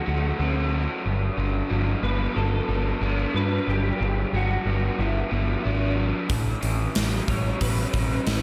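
A growling picked electric bass sits up front, overdriven, direct and amped, holding down the low end of this hazy, wistful shoegaze and dream pop fragment at 92 BPM in a straight 4/4. Beside it, a raw garage guitar drives the riff with a double-tracked, lo-fi overdrive and a subtle chorus that thickens its warm, picked tone. Further back, a brilliant, twangy electric guitar through a small old amp carries the melody, slightly broken-up and shimmering with ensemble chorus and delay. The harmony moves from Dmaj7 to Gmaj7 before turning to A7, and at 6.3 s a gated 80s drum kit arrives, its punchy kick, medium-tuned snare and hi-hat sitting up front in a gated stone room. A cathedral-sized reverb soaks the mix in a dreamy wash, and the recording is cut from a longer piece.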